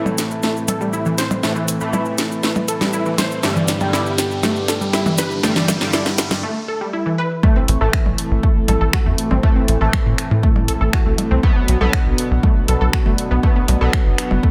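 Lightly reverberant and polished, this hypnotic, melancholic melodic techno builds from the start with a deep, moody analog pad, edgy synced polysynth stabs with a nasal sweep, phaser and delay, and a lush, detuned unison pluck playing arpeggios. A layered electronic kit of finger snaps, hi-hat, percussion blips and a cracking snare runs a fill alongside grainy cabasa, while a riser sits in the background until a short break at 6.4 seconds. The drop lands at 7.4 seconds with a heavy electronic kick up front, joined moments later by a tight, punchy, wave-folded sequencer bass, with sidechain pumping on the pad, polysynth, pluck and bass.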